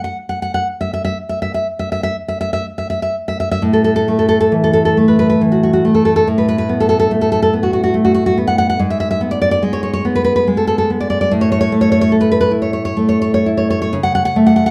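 A full-bodied, fingerpicked nylon-string guitar carries this tender, sunny romantic piece alone, flowing in a rubato 6/8 with audible finger squeak and a deep classical tone. The guitar sits up front within a reverberant studio room, and after an opening passage the music moves into a new section at 3.6 s that passes through chords such as F#madd11/A and G#dim before settling on A/C# at 13.9 s. It is a short cut from a longer piece.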